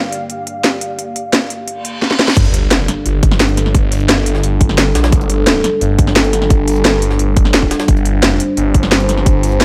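Aggressive and futuristic, this dark technical drum and bass cut runs at 174 BPM in straight 4/4 and G minor, taken from a longer piece. It opens on a Gm chord with a deep, moody analog pad of detuned saws under chorus, phaser and sidechain pumping, while an ethereal, airy pad with ensemble chorus and built-in reverb hovers above it only until 2.0 s. The drum and bass kit comes in almost immediately with cracking snare, crisp hats and crash, and a drum fill plus a reverse cymbal lead into the drop at 2.4 s, where the harmony shifts to Gsus2 and an impact lands amid background sub drops and zaps. From there a swirling, thick phased saw bass with tube saturation sits up front in a low register alongside a tight, tape-tinged electronic kick, with a very quiet, gritty, pitched-up jungle sampler kit adding a high-tuned snare underneath. Light reverb keeps the mix close and punchy.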